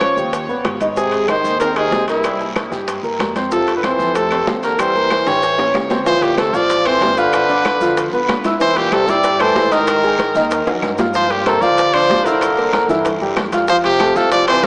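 Soaked in a lush hall reverb with a dreamy, small-speaker sound, this sunny, sophisticated Afro-Cuban jazz excerpt is led by a brilliant, punchy trumpet up front, with light vibrato, scooped notes and a diffuse ambient delay, while a clear, vintage trombone carries the second line beneath it. A woody upright piano with long sustain supplies the accompaniment over a dark, thumpy pizzicato upright bass. Ringing metal-shell timbales, bright congas and grainy maracas sit in the background with very quiet tight bongos and claves, a raspy guiro joins at 1.0 s, and a drum fill at 5.3 s leads into a new section at 6.1 s.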